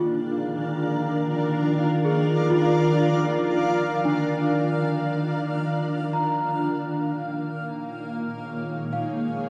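Ambient music in free time, melancholic and serene, set in a vast, echoing cathedral-like space with a long 5.8-second reverb tail. A cloudy, blurred granular pad sits up front holding sustained chords that move from Bb to Dbadd9 at 6.5 seconds, while a large celesta plays delicate, bell-like arpeggios through tape echo. Beneath them a warbling, vintage organ-like drone holds a low Eb with ensemble chorus, and the whole passage fades out from 3.7 seconds to its end at 9.5 seconds, cut from a longer piece.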